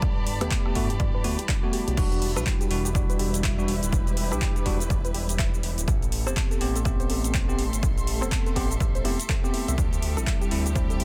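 Deep house at 123 BPM in 4/4 with a swung sixteenth-note feel, this moody, deep excerpt is cut from a longer piece and moves through Gmaj7, Am7 and D9sus4. A punchy analog kick sits up front, carrying a large-room character, while a layered drum kit of dark hi-hats, shaker, rim click, handclaps and crash fills out the groove with small room ambience. A smooth, nasal synth bass with vibrato pumps against the kick, and a bell-like tine electric piano enters at 0.4 seconds with clean stabs thrown into dub echo. In the opening two seconds, filter sweeps move across both the electric piano and a soft, round pluck whose chorused, tape-echoed arpeggios sit in the background, before the drop lands at 2.0 seconds. Underneath, a detuned, full-bodied analog pad holds sustained chords and a distant, expressive chamber string section adds texture, while a lush, bright violin section appears only from 0.0 to 2.0 seconds and again from 9.8 seconds. 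The mix is dry and dense, with a heavily limited modern master.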